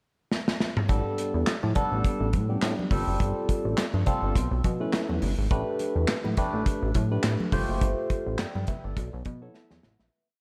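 Bathed in a lush hall reverb with a big arena sound, this slick, late-night early-eighties boogie funk piece opens with a drum fill on a dark, tight-kicked studio kit whose snare is layered with handclaps; at 0.9 seconds a glossy chorused synth bass enters with a fat syncopated line full of muted ghost notes and chromatic approach notes, alongside a barky, lightly overdriven tine electric piano with phaser and slapback echo playing syncopated chord stabs over suspended ninth chords and very quiet, ringing congas, before the piece fades out from 7.8 seconds under a closing electric piano fill.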